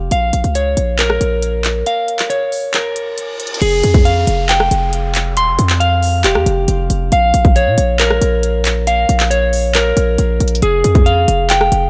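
A half-time trap groove in 4/4 drives this melancholic, hard-hitting hip hop excerpt: a trap kit of hard-clipped kick, crisp hats, handclaps, rim clicks and crash sits up front, a punchy, heavy sine 808 bass with a noise layer, fast attack and decaying notes anchors the low end, and a dark, clean picked electric guitar spins arpeggios through delay, while a reverse cymbal and downlifter sit in the background from 2.9 to 7.1 seconds, the reverse cymbal arriving near the end of a break from 1.9 to 3.6 seconds, the mix bathed in light reverb and digital ambience over Bbm and Fmadd9 chords.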